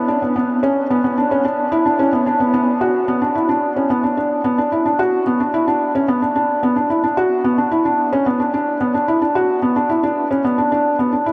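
A felt-muted upright piano opens this intimate, moving electronica excerpt and plays alone for its full 11.3 seconds, keeping to a compact register between B3 and F#4. Its tone is soft and mellow, sitting up front in the mix, with the natural noise of the instrument's action audible. A tape echo trails the piano, and a huge ambient reverb with an 8.2-second decay soaks the whole dreamy mix. The opening build-up gives way to a drop at 2.8 seconds, carrying the piece into its second section. The excerpt is cut from a longer work.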